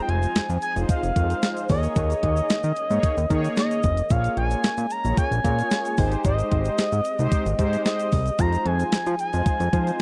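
A dry, close recording with tape saturation and little reverb frames this late-night, slick slice of early-eighties boogie funk in F minor at 112 BPM, moving from Fm7 through Eb7sus4, Bbm7 and Abmaj7 before returning to Fm7. Up front, a fat, detuned analog bass with a filter sweep sits alongside a crisp 8-bit drum machine whose thumpy kick and overdriven snare sound re-recorded in a small room, while a grainy egg shaker hovers in the background. A smooth, expressive synth lead with vibrato, chorus and tape echo carries the melody over dark, round synth brass treated with chorus and phaser, and a very quiet, silky string machine holds sustained chords beneath.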